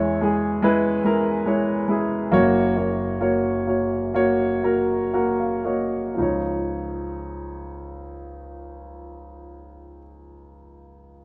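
Hopeful and heartfelt, this short pop excerpt features a warm, present grand piano up front, playing a polished accompaniment across its full 11.2 seconds and moving through E6, Gb and Dbadd9 chords in a straight 4/4 feel. The opening passage slows down, and the piano adds a fill from 4.2 to 6.2 seconds before a new section begins at 6.2 seconds. A wet plate reverb surrounds the sound, though the mix keeps the rough character of a home demo.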